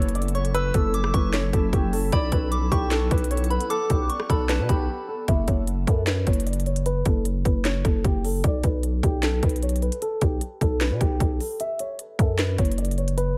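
A dark, mellow concert grand piano carries the melody from the start, over a growling, buzzy 808-style bass and an overdriven trap kit with a hard-clipped kick, sharp snare, crisp hats, rim clicks and handclaps. Bass and drums sit up front in this menacing, hard-hitting half-time trap excerpt at 152 BPM in F# phrygian, with the piano shaded by a low-pass filter and analog delay. For the first 5.3 seconds, a blurred, detuned granular pad hovers in the background while a soft, pure FM bell adds a second line coloured by chorus, phaser and delay; brief breaks at 4.9 and 11.6 seconds punctuate chords moving from F#m7 and Bm7 to a bare F#5, all in light reverb.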